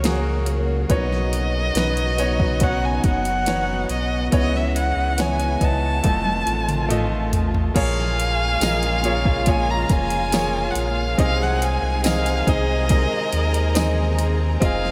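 A melancholic, emotional pop ballad at 70 BPM opens with a warm, expressive solo violin singing up front over bright, brilliant concert grand piano, dark sul tasto strings in the background, a deep sine-like sub bass and a soft-kicked, fat-snared electronic R&B kit. A drum fill from 6.0 seconds leads into Bb minor at 7.8 seconds, just after a smooth violin section adds a second line at 7.7 seconds. A very quiet jingly tambourine joins at 8.6 seconds, and a huge ambient reverb leaves the whole short cut dreamy.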